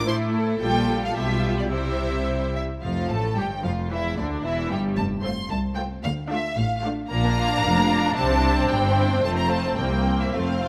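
Cheerful and graceful, this short cut from a quick classical-period movement for string orchestra moves at 112 BPM in 2/4 in F major, with all five sections playing throughout its 10.7 seconds. Up front, the violins carry the melody with an expressive vibrato over a clear second violin line, while bright violas supply accompaniment and rich, smooth cellos and lush double basses anchor the bass. The ensemble sits at a distance in the moderate reverb of a scoring stage, and a brief opening phrase gives way at 2.8 seconds to a longer passage that settles toward F before closing on C7.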